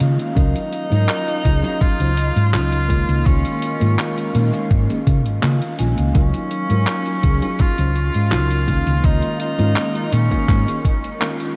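A bright, distant tenor saxophone with vibrato carries the melody from 0.4 seconds through this faded, dreamy vaporwave excerpt, set over a mellow FM electric piano with chorus and diffuse delay, a warbling tape-like pad in the background, a very quiet clean electric guitar riff with a brief fill at 5.1 seconds, a round, punchy hollow-body bass and thumpy electronic kick up front, and a detuned 8-bit drum machine's handclaps and hi-hat, all in a reverb-soaked cassette-tape mix that drifts between Ebm9/Db and Db69 chords.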